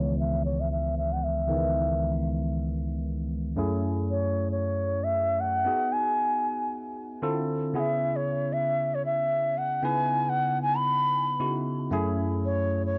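A reedy, airy bansuri carries the melody up front in this hypnotic, soulful amapiano excerpt, its close-miked bamboo tone carrying vibrato and a soft attack, shaped by a low-pass filter and analog delay. Beneath it, a barky, bell-like tine electric piano plays bright, direct accompaniment through a phaser and low-pass filter, moving from C#m7 through F#m9, G#m7 and a brief Dm7. The 115 BPM groove in C# minor swings its sixteenths under a filter sweep spanning the full 13 seconds, all captured with the dry, gritty character of cassette tape in a small room.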